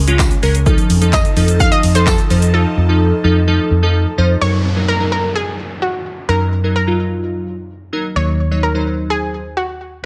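Confident yet bittersweet, this dance-pop excerpt moves at 128 BPM in a straight 4/4, opening with a punchy house drum kit of handclaps, hi-hat, kick and shaker plus a jingly tambourine, both of which drop out by 2.5 seconds. A dark, round, foam-muted electric bass and glassy, detuned digital keys pump under sidechain compression throughout, while an airy, breathy pad with chorus and phaser holds sustained chords early on and a warbling analog pluck with chorus and delay carries the melody over chords moving from Bbm7/Db and F7 to Gb6 and Ebm7. An electronic downlifter arrives at 4.5 seconds, and light reverb rounds out the mix.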